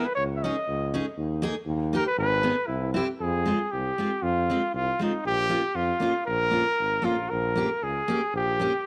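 A mellow trumpet with vibrato carries the jolly, bouncy melody of this short alpine folk excerpt at 117 BPM in a straight 2/4, over a full-bodied picked steel-string acoustic guitar and a roomy tuba bass touched by tube saturation and light vibrato, settling into F minor from 3.2 seconds in a lightly reverberant studio space.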